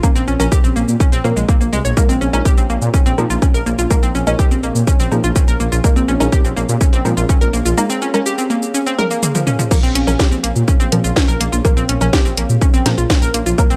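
A straight, driving pulse from a punchy, tape-warm electronic kick and a house drum kit with a cracking snare, hi-hat, shaker, toms and crash (all re-recorded in a small room) anchors this dark melodic techno fragment from a longer piece, where a rumbling, detuned sawtooth bass and a bright, round analog pluck arpeggio pump up front, muted dub chord stabs with phaser and delay sit in the background, a very quiet, warbling ambient pad enters at 0.9 seconds, and the kick drops out from 7.8 to 9.7 seconds as a drum fill leads back in, all with a dry, gritty hardware sound.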